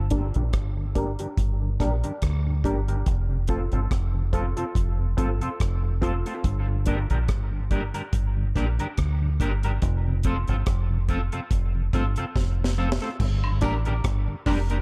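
A laid-back 71 BPM dub reggae groove in G minor with a lightly swung sixteenth feel sets a spacious, meditative mood, anchored by a round, foam-muted fingered bass and an up-front drum kit with a tight kick, high-tuned snare and dark cymbals. A twangy guitar at the edge of break-up and detuned sawtooth chord stabs drift through dub echo and a filter sweep over Gm and F, while a flute-like tonewheel organ on slow rotary speaker sits in the background. A drum fill at 12.4 seconds leads into a brief return of the stabs and a vintage burst of woodblock and tambourine near 13.4 seconds.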